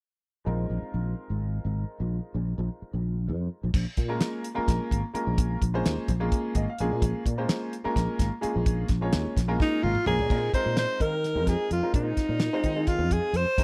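A clear, worn grand piano and a growly, punchy fretless bass with ensemble chorus open this intense, funky excerpt of electric jazz fusion in a brisk 7/8 at 256 BPM, settling into Bb minor as a damped 70s drum kit with a fat snare, tight kick and dark cymbals enters at 3.7 s. The piano adds a fill at 6.3 s, then piano and drums fill together as a close-miked alto saxophone with vibrato and slapback echo takes the solo melody at 9.6 s, all captured in a dry, close 1970s-style studio sound.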